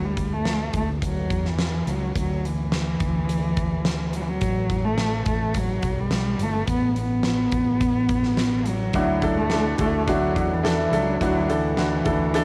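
An up-front bowed cello carries the melody from the opening, its nasal, boxy tone shaded with vibrato and portamento and coloured by cassette tape. This excerpt of hopeful, uplifting piano-driven pop sits in straight 4/4, with a dark, round fretless electric bass underneath and a huge arena drum kit joining at 0.2 seconds, its fat snare and punchy kick ringing with a hall-like sense of space. The harmony moves through suspended and added-ninth colours, shifting from Dsus2 to Asus2 and then Dadd9. At 8.9 seconds a fingerpicked steel-string acoustic guitar slips in behind the others with a full-bodied sound of fresh strings. A moment later a bright upright piano arrives, woody, brilliant and vintage, sitting up front as accompaniment. The whole piece has the intimate, booth-like feel of a home recording on cassette.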